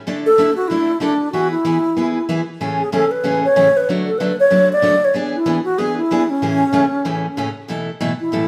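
Wet stone-room reverb surrounds this cheerful, down-home country excerpt at 189 BPM with a swung feel in A major: a bright, full-bodied picked steel-string acoustic guitar with audible finger squeak enters at 0.1 s, and an airy, hollow alto flute with vibrato, tongued notes and lifted highs carries the melody from 0.3 s, both up front, as the live-in-one-room band moves through chords from Dsus2, E and Amaj7 to a closing Asus2.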